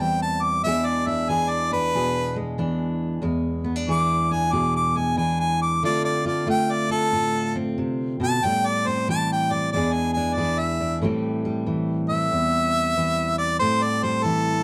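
A close-miked harmonica with light vibrato and scooped notes carries a mournful, smoky melody over a full-bodied fingerpicked jumbo steel-string acoustic guitar from the very start of this swung acoustic country blues excerpt, with both parts up front in a moderate studio reverb, before the bright harmonica takes a jazz-inflected solo from 11.0 seconds to the close.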